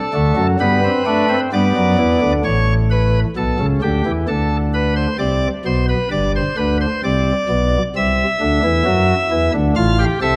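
A pipe organ sounding a cornet stop opens this short excerpt of a baroque-style fugue in three parts. The mood is serious and driving, set in a steady, straight four-beat metre. The solo stop has a nasal, baroque voicing, with a touch of chiff at the start of notes and a tremulant shimmer. It sits up front and ranges from a low G1 to F5. The harmony moves from D to G, then at 2.4 s it turns to A7 and a new passage begins, moving through D5, G and C before settling on F/A near 9.8 s. A moderate concert hall reverb gives the organ a spacious, resonant tail.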